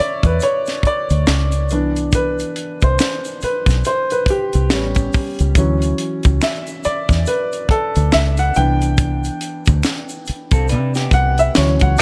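Sensual and smooth, this 70 BPM neo-soul R&B excerpt, cut from a longer piece, swings gently on 16ths as a clear, intimate grand piano carries the lead over Dmaj9, Cmaj7 and A7 chords with audible action noise, backed by a round, punchy dub bass that sits dark and up front, a tight funk kit with a high-tuned snare, an egg shaker and finger snaps tucked in the background from 0.2 seconds, and a slightly broken-up, lo-fi electric guitar that slips in briefly at 10.5 seconds, all inside a studio ambience.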